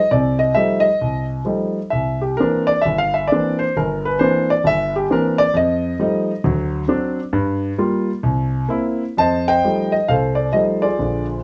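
A solo concert grand piano sits up front in a natural, intimate sound with light reverb, its deep bass and audible action noise giving the recording a close, tactile presence. This is solo jazz in F mixolydian at 132 BPM in 4/4, with a swung eighth-note feel loosened by rubato, and the mood is sophisticated and relaxed. The piano ranges from G1 to A5, carrying the whole piece alone through a harmony that moves from F9 to C9 and back, then through D7, Gm7 and C7. The opening passage runs to 9.2 seconds, when a new section begins on a return to F9. This short excerpt, cut from a longer piece, ends at 11.4 seconds.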